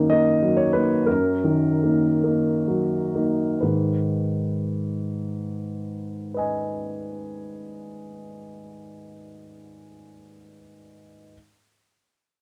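Set in 6/8 with a free, rubato feel, this short fragment of neoclassical minimalist piano moves at a slow 41-64 BPM counted in dotted quarters, easing back in tempo through its opening 3.6 seconds. A grand piano plays alone from start to 11.3 seconds, spanning F#2 to G#5 in G# minor, with a polished, present tone placed up front in the mix. The music begins on a D#m/F# chord, then settles onto G#m at 3.6 seconds as a second, longer section unfolds. Moderate small-room reverb gives the piano a close, intimate space, and the overall production leans dark and warm. The mood is reflective and intimate, like a moment lifted from a longer piece.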